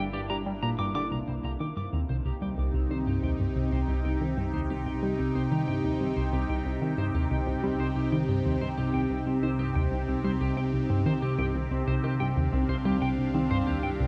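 Hypnotic and expansive, this ambient, sequencer-driven space music is cut from a longer piece and moves in a straight 4/4 pulse. A tight, driving sequenced synth carries the riff in the low register, its detuned sawtooth and pulse tones shaped with a fast-attack filter pluck, chorus and delay, and a filter sweep runs over this sound from 1.1 seconds onward. Above it, an evolving wavetable pad sits up front with sustained chords, its morphing, unison triangle voices given a slow attack, long release, phaser and built-in reverb. A clean electric guitar picks bright arpeggios through delay and fades in from 1.1 seconds, while an analog drone holds the bass in the background, its wave-folded, pulse-width-modulated tone softened by chorus. The harmony shifts from G minor to C minor at 1.1 seconds, and a wet plate reverb wraps the dark, warm production in a long tail.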